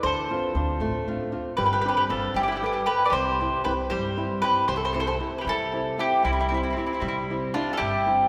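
Bathed in the long, wet reverb of a church, this lively, sunny Italian folk serenade in 6/8 features an up-front, woody mandolin carrying the picked double-string melody over a mellow second mandolin line, a fingerpicked flamenco guitar accompaniment and a pizzicato upright bass on steel strings, moving through Dm7, Gsus4 and Gadd9 before settling on C.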